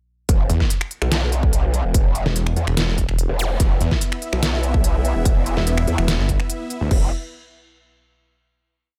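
Menacing and heavy, this short, complete heavy wobble dubstep piece runs at 145 BPM in 4/4 with a half-time feel and sits around E, opening straight into a drop at 0.3 seconds. A punchy, up-front electronic kick anchors a layered kit of deep snare, crisp closed hats, finger snaps and crash, all touched by a small room reverb and a tape-like warmth. Two aggressive basses carry the weight between E1 and E2: a growling, wobbling bass shaped by a formant filter, chorus and distortion, playing modulated phrases with changing wobble speed, and a snarling sawtooth bass with a moving notch, playing chopped phrases. A brief electronic zap marks the transition at 3.4 seconds, just before huge, lush supersaw chords enter at 3.6 seconds as a sustained pad with sidechain pumping. The mix is dry and loud, and the drop gives way to a final chord at 6.9 seconds.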